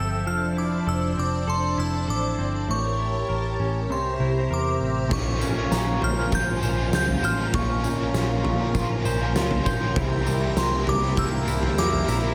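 Dream pop at 99 BPM in 4/4 with a straight feel, this ethereal, dreamy excerpt floats in a lush hall reverb that soaks the whole mix. From the opening, a glassy FM synth bell carries the melody high up, its crystalline tone colored by chorus, phaser and delay, while a shimmering vintage string machine holds sustained violin chords under an ensemble chorus. A twangy, fingered electric guitar at the edge of break-up plays arpeggios with subtle chorus and delay, and a round, foam-muted vintage bass sits low and dark. At 5.1 seconds a biting overdriven guitar joins with harmonic tremolo and analog chorus, and an oversized, low-tuned drum kit arrives up front with a punchy kick, fat snare, dark cymbals, tambourine and toms in a gritty, pumping room sound. A very quiet glockenspiel struck with hard plastic mallets adds a sparkling metallic texture near the top of the range, while the harmony moves from Dm9/F through A7b9 and C7 to a long Bbmadd9 before returning to C7.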